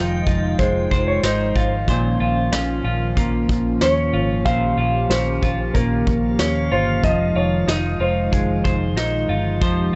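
Ethereal and hazy, this dream pop excerpt moves in a straight 4/4 over Fm7 and Bbmadd9 chords, with a dark, clean lap steel carrying a slide melody through tape echo until 8.6 seconds while a clean electric guitar, up front, picks arpeggios drenched in lush chorus and tape echo. Beneath them a hollow, flute-like pad sustains chords in the background, a foam-muted fingered bass gives round, punchy low notes, and a soft brush kit with a punchy kick enters at 0.3 seconds from a small room. A glassy texture of drifting overtones surfaces faintly at the start and again around 6.3 seconds, all within a dry, gritty recording whose top end is dulled.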